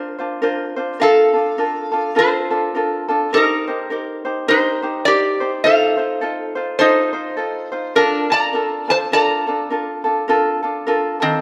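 A gently swung 4/4 at 104 BPM sets a relaxed, languid Hawaiian mood in B-flat major, in this short passage cut from a longer piece. A metal-body resonator slide guitar carries the melody from the opening, its nasal, metallic tone softened into something mellow as it glides with the slide and rings out under fingerpicks, ranging from Eb3 up to Bb5. Beneath it, a light, warm, fingerpicked ukulele supplies accompaniment, both instruments sitting up front and playing through to the end at 11.4 seconds. The harmony drifts from Bbadd9 to Bbmaj7 at 1.0 seconds, then moves through Eb6 and F7 before settling back on Bbmaj7 at 8.0 seconds. A moderate recital hall reverb gives the pair a soft, airy halo that suits the unhurried feel.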